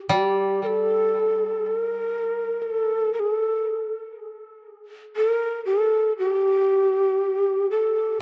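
Calm and austere, this cut from a longer Japanese traditional piece drifts at a rubato 59 BPM in 2/4 with uneven beats, tuned to A4 = 438 Hz, as a breathy, hollow bamboo shakuhachi carries the melody up front with vibrato, tongued chiff and rolled-off highs, while a woody, fingerpicked koto accompanies on G3 until 3.2 s, both parts touched by tape echo and set in a wet spring reverb with small-room ambience and an echo-heavy cassette-tape sound.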